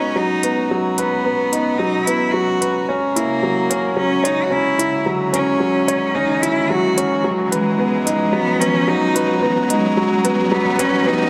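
Melancholic and hypnotic, this piano and strings electronica moves in a straight 4/4 feel and builds steadily from the start. Up front, a warm, polished grand piano repeats a riff colored by tape echo, while a bright, biting cello sings the melody with vibrato and an intense, distant edge. Behind them a string quartet holds soft-attack sustained chords, played sul tasto with a nasal, pure and floating quality, one player per line. An electronic hi-hat enters at 0.4 seconds with smooth, overdriven hats that carry the grit of a small room, and a background riser climbs in from 1.2 seconds to push the build-up forward. The harmony turns from G#m7 to F#7 and back to G#m7, all set in a moderate, lush hall reverb, in a passage cut from a longer piece.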